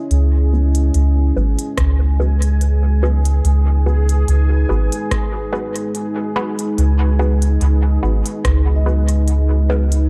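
Deep and spacious, this ambient dub passage, cut from a longer piece, rests on a soft, round sub bass up front beneath a dark, detuned pad whose slow-attack sustained chords carry chorus and their own reverb. A mellow vibraphone played with soft mallets rings out arpeggios through dub echo in the background, while a bubbling, resonant stepped-filter texture drifts alongside and a muted, phased dub chord stab enters at 0.5 seconds under a filter sweep. A smooth-hatted electronic drum kit with rim clicks, re-recorded in a large room, feeds dub echo with a light swing, joined from 1.8 to 8.6 seconds by a tape-warm analog kick set in the background.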